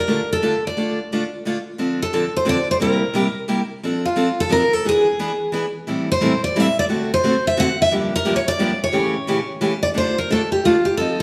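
Jazz waltz in a fiery, swinging mood, played briskly with a swung lilt in three. Two picked steel-string acoustic guitars carry the whole piece, both sitting up front in the mix. The lead guitar takes the melody in its upper middle register, its jumbo body giving a full, bright tone with fresh strings and audible finger squeak. The second guitar, a concert model with a bright voice, enters a moment later at 0.1 seconds and supplies the accompaniment from low bass notes up through the middle range. The harmony moves through a chain of seventh chords, from Dm7 and C7 through E7, Am7 and D7 to Gm7 and A7, before settling back on D minor at 9.9 seconds. The duo sounds like it was captured live together in a large studio, with a generous, wet reverb surrounding the playing in this short cut from a longer performance.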